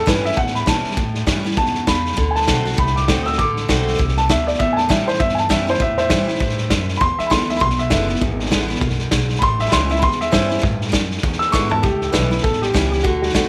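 A small room with light reverb frames this upbeat, retro rockabilly clip, moving at 199 BPM in 4/4 with a light swing over A7, D7 and E7 chords. A dark, mellow upright piano sits up front and carries the melody as a solo from 0.0 to 11.8 seconds. It is backed by a bright, full-bodied picked dreadnought acoustic guitar with audible finger squeak, a thumpy pizzicato upright bass on gut strings, and a vintage drum kit with a punchy kick and a rolled-off top. A drum fill at 11.5 seconds leads into a new section at 11.8 seconds, settling back on A7.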